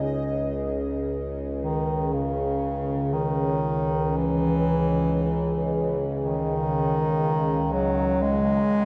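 Ominous and dark, this short cut from a longer dark ambient drone piece drifts in free time over a single C#madd9 chord. A resonant, overtone-sweeping drone with moving overtones sits up front from the start, treated with chorus and built-in reverb, while a deep, detuned pad with a sub octave holds sustained chords very quietly beneath. At 1.6 seconds a warm solo bass clarinet enters up front with a soft attack and smooth top, its classical-style melody trailed by delay, all set in a huge, wet reverb with a long 7.7-second decay.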